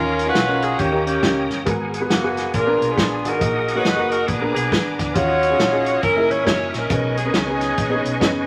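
An edgy, close-miked saxophone section carries the melody from the first moment of this solemn, fervent uptempo gospel passage, singing with vibrato and punch over a woody, slightly detuned upright piano, a reedy organ lightly overdriven through a fast rotary speaker with chorus vibrato and key click, and a round, dark hollow-body electric bass. A soul drum kit joins at 0.2 seconds on hi-hat, kick and snare, its tight kick and rolled-off top sitting up front in a swung feel, and the upright piano closes with a fill at 8.0 seconds. Vinyl crackle and moderate studio reverb frame the extended chords of this section, which is cut from a longer piece.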